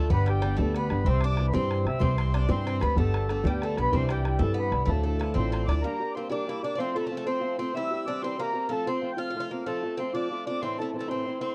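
A 6/8 jig in a straight feel drives this spirited, dark and lively Celtic folk piece, cut from a longer performance. A mellow, reedy accordion with a rich tone-chamber sound carries the melody, while an Irish bouzouki adds a metallic, double-strung second line and a wooden whistle, airy with vibrato and a chiffy attack, sits in the background with tape echo. A boxy, fingerpicked swing-style acoustic guitar provides the accompaniment throughout. Up front, a thumpy, woody pizzicato upright bass anchors the opening half alongside a boomy, band-limited bodhran in the background, both dropping out at 5.8 seconds as the second section begins and the harmony darkens from G toward G minor, F and A minor. The dry, close recording has the intimate character of a 1970s studio session.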